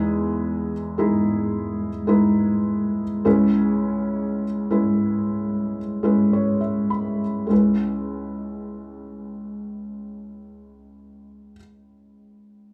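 A soft, felt-muted upright piano plays alone and sits up front in this heartbroken, intimate folk excerpt in C# minor, its mellow tone moving from Emaj7 to C#m7 at 3.3 seconds at a slow 49-69 BPM in 4/4, easing down in pace until a new section begins at 7.5 seconds, all within a wet studio reverb that suggests a band playing live in one room.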